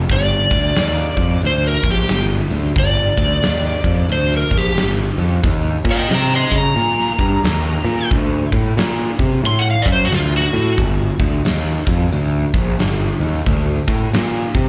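A growly, fuzz-laden picked bass opens this heavy, brooding, swung blues rock and southern rock excerpt, joined almost at once by a punchy, polished arena drum kit of kick, snare and hi-hat and by a warm overdriven slide guitar whose solo, coloured by slapback and tape echo, ends at 10.8 seconds while bass and drums carry on, heard as a live gig through a venue PA with club reverb.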